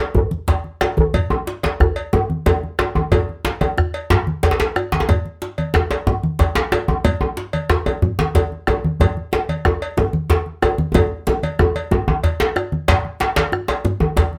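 A 12/8 pulse at 123 BPM, gradually speeding up, drives this earthy, powerful West African drum ensemble excerpt, where thick-skinned low-tuned congas, a medium-tuned djembe, a tight, cracking, saturated djembe up front, a round, dry bombo and a metallic cowbell play together under light reverb, with a drum fill from 10.9 to 12.9 seconds leading into a new section.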